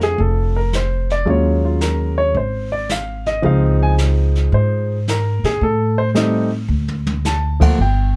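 A baby grand piano with a natural, short-sustained tone carries the melody from the first second over woody pizzicato upright bass and a brushed jazz kit with dark cymbals and a boomy kick, in a relaxed, warm jazz piano trio fragment swinging at 110 BPM in 4/4, moving through chords such as Bbmaj9, Ebm11 and Dbmaj9 in a dry, dark mix, with a drum fill at 6.7 seconds.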